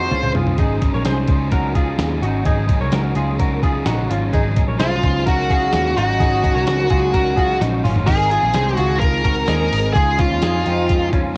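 This home cassette recording carries a light reverb and a dusty, tape-worn character, capturing a breezy stretch of jangly indie pop in a straight 4/4, cut from a longer piece. A compressed, sampler-style soul drum kit, re-recorded in a large room, drives it with a thumpy kick, fat snare, hi-hat, toms and crash, and its fills open the passage and return at 7.6 s to usher in a new section at 8.1 s. Beneath it, a dark, foam-muted electric bass sits round and punchy, while a crunchy overdriven guitar picks a warm accompaniment and a direct-recorded clean guitar spins twangy arpeggios through an ensemble chorus. After a brief stab at the very start, a high-gain distorted lead guitar takes the melody from 4.8 s, sitting bright and up front. The harmony moves from Dbmaj7 to Ab7sus4 and finally settles on Dbadd9.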